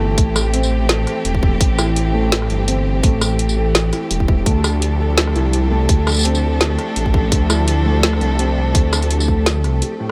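Spacious and heavy, this half-time drum and bass excerpt sets a rich, vibrato-laden chamber string section with sampler grit and sidechain pumping over a soft, felt-muted upright piano arpeggiating through digital delay, a deep, rumbling detuned saw bass with tube saturation, a very quiet pulsing gated texture, and an up-front electronic kit of woody snare, metallic hats, rim click and tambourine anchored by a tight kick, all moving from Am7 to Dm inside a digital ambience before a break at 9.8 seconds.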